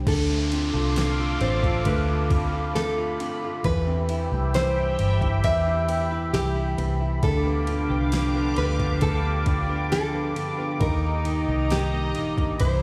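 Heard through a club's PA with a light digital ambience, this heartfelt, hopeful pop ballad excerpt sits in a roomy live-venue reverb at a slow, straight pace. A fingerpicked nylon-string guitar with fresh classical strings carries the melody over a soft, intimate felt-muted upright piano, both touched with slapback echo. Up front, a dark, round, foam-muted vintage electric bass gives punch beneath a produced electronic R&B kit with a soft kick, fat snare, ride and crash. A bright, detuned sawtooth-and-sine pad with a filter swell and chorus sustains the chords high above, while a clean, compressed semi-hollow electric guitar plays very quiet arpeggios and an electronic swell and downlifter runs until 7.2 seconds. At that point a studio cello section enters in the background with a pure, floating sul tasto second line as the harmony moves from Dm7 and Cmaj7 to G7 and Ebmaj7.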